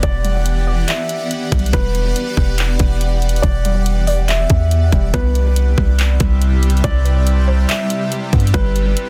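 Spacious and ethereal, this short atmospheric cloud-rap excerpt moves in a half-time feel over Em9, Cmaj7 and Gmaj7 chords, with a shimmering pad of detuned, granular tones carrying chorus, phaser, reverb and sidechain pumping beneath a soft, felt-muted upright piano melody whose action noise sits in an intimate, filtered haze with delay. Up front, a deep, boomy 808-style bass and a trap kit with a hard-clipped kick, bright hi-hats and handclaps anchor the track, while a warbly, lo-fi pluck enters at 0.2 seconds with arpeggios in the background and a glassy texture of drifting overtones floats behind everything else. The master is dense and heavily limited, and the recording carries little reverb overall.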